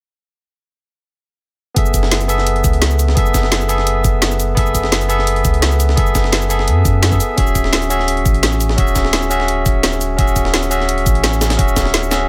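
Liquid drum and bass with a soulful, rolling mood, this excerpt opens at 1.7 s with a barky, clean tine electric piano up front with delay, then at 1.8 s drops into a deep, round sine sub bass, a knocking electronic kick, a layered kit with a woody snare, cabasa and bright hats, and a gritty, compressed breakbeat sampler-style kit in the background, all moving from F#m11 to Dmaj9#11 inside a digital ambience.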